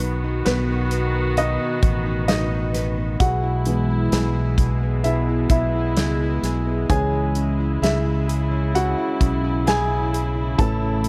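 A grand piano with a short sustain carries the solo through this longing, emotional pop ballad excerpt at 65 BPM, moving from B to E/B at 3.2 seconds and to A at 10.6 seconds, while a studio string section holds sustained chords with a nasal, reedy gut-string tone and light vibrato, a fingerpicked nylon-string guitar plays arpeggios in the background, a round, up-front fingered electric bass anchors the low end, and an acoustic drum kit with a punchy kick, medium-tuned snare and hi-hat sits forward in a small, dark-sounding room.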